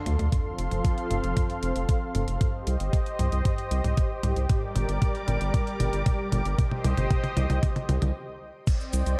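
Danceable and bittersweet, this short italo disco fragment at 115 BPM sets a lush, warbling unison pad holding sustained chords through chorus and shimmer reverb over a round, deep analog bass with tube saturation, a detuned 8-bit digital drum machine of cabasa, crash, hi-hat and toms, and a thumpy, tape-tinged electronic kick that sits up front, moving through F, Cm, Gm and Cm before a stop at 8.1 seconds, and it settles on Cmadd9 at 8.7 seconds, all in a light digital ambience.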